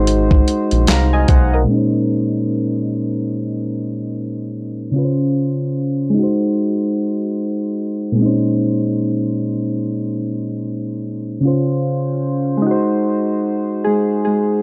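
Lo-fi hip hop with a nostalgic, reflective mood, this excerpt opens with soft, full-bodied electric-piano-like synth keys alongside a compressed, sampler-style drum kit of thumpy kick, medium-tuned snare, hi-hat and handclaps and a deep, nasal analog bass. The drums stop at 1.5 seconds and the bass at 1.7 seconds. The keys then carry on alone over a swung sixteenth-note feel, moving through Bbm11, Dbmaj7 and Ab7 chords, treated with chorus, cassette tape colour, plate reverb and a filter sweep that runs from 1.7 seconds to the close. The recording has a dry, gritty hardware character and a dark, up-front sound in a moderate studio reverb.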